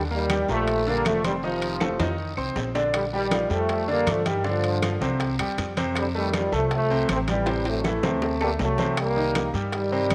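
Bathed in a moderate echo-chamber reverb, this driving, passionate salsa excerpt puts a clear, punchy trombone section with light vibrato up front on the melody, beside a bright, intimate baby grand piano whose action noise is audible, over a dark, thumpy pizzicato upright bass, ringing low-tuned congas and metal-shell timbales in the background, raspy guiro, very quiet woody claves, and tight high-tuned bongos that join at 2.9 seconds.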